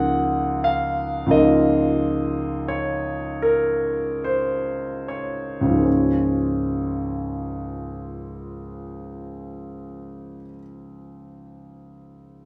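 Hazy and dreamy, this brief passage of impressionist classical solo piano drifts in 9/8 at a very slow 23 to 31 BPM in dotted quarters, with free rubato in D-flat major and tuning at A4 = 438 Hz. A warm concert grand, natural and up front with a deep bass, spans from Db2 to Gb5, slowing down through the opening Ebm9/Db harmony before settling onto Db6 at 5.9 seconds. Moderate small-room ambience gives the sound a close, intimate setting.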